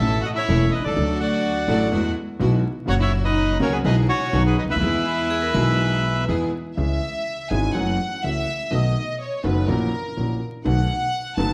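Playful and passionate, this rubato tango excerpt at 124 BPM in 4/4 moves from E major into C# minor at 6.8 s, with a reedy, airy bandoneon up front carrying the melody until 6.2 s over a vintage, deep-toned concert grand piano and a woody, thumpy pizzicato upright bass on gut strings, while a sul tasto violin section floats a smooth, pure second line and takes the solo from 6.8 s, a focused bowed string section with vibrato adds stabs in the background, a metallic hard-mallet vibraphone rings briefly from 5.3 s, and a wet large studio reverb and vinyl crackle colour the sound.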